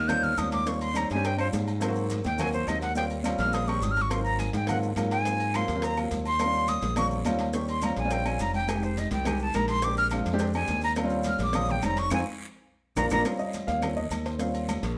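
Sophisticated and lively, this Afro-Cuban jazz excerpt races along at 210 BPM in a straight 4/4, centered on Eb mixolydian and cut from a longer piece. A breathy, bright concert flute carries the melody up front with a straight, tongued and slightly unsteady tone, soloing until 13.2 seconds, when the piano takes over the solo at 13.3 seconds. The baby grand comps with an intimate, natural sound and short sustain, its action noise audible, while a growly, punchy fingered electric bass sits up front with a direct, electric edge. Behind them, a bed of percussion fills in: round, low-tuned cowbell struck with hard hands, ringing metal-shell agogo bells and timbales, raspy guiro and grainy maracas sit in the background, with thin-skinned congas and woody, band-limited vintage claves very quiet beneath. The harmony cycles through lush Eb13, Ab9 and Ab13 colors before a Fm7 to Bb13 turn, and a drum fill and band accent from 12.1 seconds over a third-less F7 and Bb lead back home to Eb13. 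The whole band plays live in one room, wrapped in a wet stone-room reverb.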